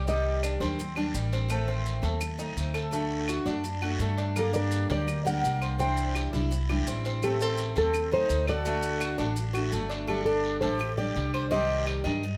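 Danceable and warm, this Cuban son and guajira excerpt moves at 168 BPM in G harmonic minor, with a thumb-plucked classical nylon-string guitar carrying the melody and a breathy jazz flute with vibrato and a soft attack adding a second line; both sound only briefly at the start, then return at 4.4 s. Underneath, a bright picked steel-string acoustic guitar supplies accompaniment, a metallic double-strung tres with slapback echo plays arpeggios, and a dark, thumpy pizzicato upright bass with gut strings sits up front. A raspy guiro ticks along while grainy maracas and woody claves sit in the background, all under light reverb, as the chords cycle through Cmadd9, Adim, D and Gm.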